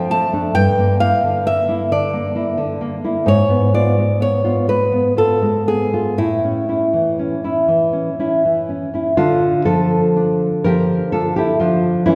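A dark, woody nylon-string guitar carries the accompaniment in this solemn, elegiac romantic duo, its thumb-plucked bass full-bodied and deep in classical tone, with the dulled character of old strings. Above it, a second nylon-string guitar sings the melody in a small, fingerpicked voice that sits up front alongside the lower part. The music moves in a slow, rubato 6/8, lingering through somber harmonies from Dm/F toward a tense G#m6 and an A chord before settling back on Dm. The melody falls away at 8.7 seconds, leaving the accompanying guitar alone for the closing passage that begins at 9.2 seconds and runs to 12.2 seconds. A wet concert-hall reverb places both players further back in the room, lending this excerpt, cut from a longer piece, a grave and spacious air.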